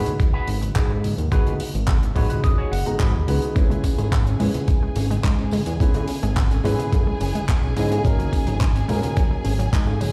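A dark grand piano with tape echo, a twangy envelope-filtered electric guitar riff and a fat, detuned analog bass open this groovy, cosmic nu-disco excerpt in G# minor at 107 BPM over a G#m7 chord, joined by a gritty, overdriven electronic kick up front, a dry funk kit with handclaps and hi-hat, and distant congas, bongos and tambourine, while a clean guitar fill arrives at 1.9 seconds, the riff stops at 3.5 seconds, and at 3.6 seconds smooth bowed strings with vibrato and a lush, punchy unison pluck arpeggio with digital delay, both pumping with the sidechain, enter over C#m7/G# before a shift to D#m7/G#, all in a stone room sound.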